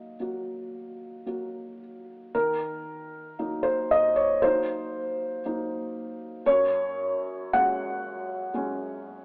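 The recording has a rough home-demo quality with a thin, telephone-like tone, softened by a lush hall reverb that lingers for about 2.5 seconds. Within it sits a single felt-muted upright piano, placed up front, its thick felt giving a soft, mellow and intimate voice. This is neoclassical minimalist piano in Eb dorian, moving at a rubato 55-61 BPM in 4/4 with an intimate, wistful mood. The piano ranges from Gb2 to Gb5, resting on an Eb minor harmony before shifting to a Gbsus2 chord at 6.4 seconds. A new passage begins at 2.3 seconds, and this short fragment of a longer piece ends at 9.2 seconds.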